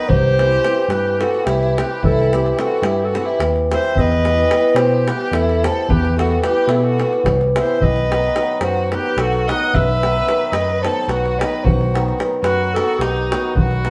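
A dark, distant clarinet carries the melody in a classical style, sounding roomy against the rest of this short Balkan wedding-band excerpt cut from a longer piece. Beneath it, a single bowed violin plays a second line with vibrato, its tone rich, focused and a little boxy. A hammered dulcimer supplies shimmering, ringing acoustic accompaniment, while a bell-like tine electric piano holds down the bass, bright, clean and up front. The davul adds deep percussion heard close and dry. Moving at 218 BPM counted in eighths in a straight 7/8, the band plays live in one room with studio reverb, and in this bittersweet, restless piece the harmony shifts from C to E minor around 4.0 seconds and moves to B at 7.8 seconds.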